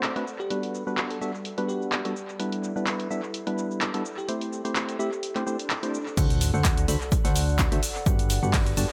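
A dark, hollow organ stab sits up front playing the riff of this energetic, bittersweet piano house cut, colored by chorus, tape echo and sidechain pumping, at 127 BPM in 4/4 with a light 16th-note swing. Beside it, a punchy analog drum machine with a tape-warm, small-room character drives cabasa, crash cymbal, handclaps and hi-hat through low-pass filtering and tape echo. A warbling, nostalgic lo-fi pad pumps softly in the background, while a sparkling, bell-like FM electric piano carries a brief melody from 0.4 s behind a phaser and chorus. The harmony moves from Gmaj7 to Am7, and an electronic swell and sub drop begins at 5.5 s, leading into the drop at 6.2 s, where a round, pumping FM bass and a punchy electronic kick arrive alongside a very quiet brushed jazz kit of snare, hi-hat and shaker as the chords turn to D7 and back to Gmaj7. Light digital ambience gives the echo-heavy mix its space.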